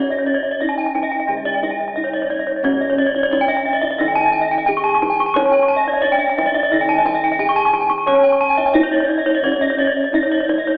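A straight 4/4 pulse carries this shimmering, ceremonial stretch of Balinese gamelan, cut from a longer piece. A mellow bronze metallophone struck with padded disc mallets carries the melody, with airy beating from its paired tuning. Two bright, horn-mallet metallophones spin arpeggios above it, one of them sitting up front, while a boxy metallophone sits in the background below, dark round bossed gongs anchor the bass, and a deep kendang played with soft hands adds percussion, all in a reverberant recital hall filtered to a thin telephone sound.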